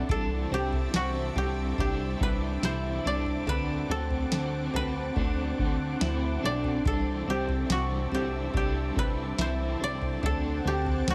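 Koto, guitars, pad and bass open together in this floating, ethereal dream pop passage in C lydian at 71 BPM, with the booming analog drum machine arriving at 0.1 s. The koto carries the melody, its woody, fingerpicked tone set off by tape echo, while a clean, twangy electric guitar picks arpeggios through lush chorus and its own tape echo. Alongside them an overdriven semi-hollow guitar adds hollow-body accompaniment shimmering with tremolo and ensemble chorus, and a thick, detuned unison pad holds slow-blooming sustained chords. The chorused synth bass sits up front with a glossy, mellow pulse-wave sound, and the drum machine's deep kick, tonal snare and toms stay dry and tape-tinged. The harmony alternates between C69 and D7 under light reverb and digital ambience, in a fragment cut from a longer piece.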